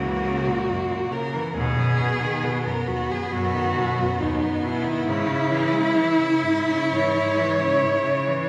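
Awash in the resonant reverb of a church or concert hall, this short, elegiac classical passage for four solo cellos drifts in rubato at 69 BPM, with a dark, woody melody cello sitting up front above a rich, expressive second line that glides with portamento and soft attacks, while focused, smooth-topped accompaniment and bass cellos underpin the melancholic harmony with vibrato until the bass drops out at 7.7 seconds.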